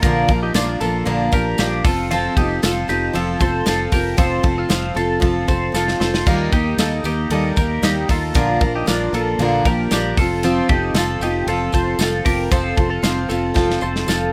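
A straight 4/4 groove from a punchy studio drum kit, with fills at 5.7 and 13.6 seconds, drives this youthful, bright jangly indie pop clip, where an up-front, full-bodied steel-string acoustic guitar picks out the chords, a twangy, compressed twelve-string electric guitar spins arpeggios through phaser and slapback echo, a round, dark fingered bass sits underneath, and a jingly tambourine rides in the background of a dry, rough home-demo mix.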